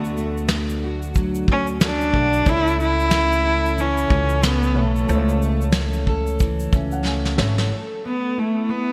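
A carefree, sunny acoustic pop excerpt in A major moves at 92 BPM in 4/4 with a swung sixteenth-note feel, framed by a lush hall reverb and a bright 1980s-style digital sheen. Up front, a single bowed cello carries the melody with vibrato and a nasal, boxy tone, its line touched by delay. Beneath it, a fingerpicked plugged-in jumbo steel-string acoustic guitar adds full-bodied, double-tracked accompaniment, while a dark, mellow upright piano with analog chorus sits in the background and plays a fill from 6.4 to 7.7 seconds. A woody pizzicato upright bass and a soft brush kit of kick, shaker and fat snare, with gated reverb and a rolled-off top, ground the groove, the drums adding a fill just before 7.7 seconds. At that point the harmony moves from D and A to Asus2, and the cello and guitar carry on alone until 8.9 seconds.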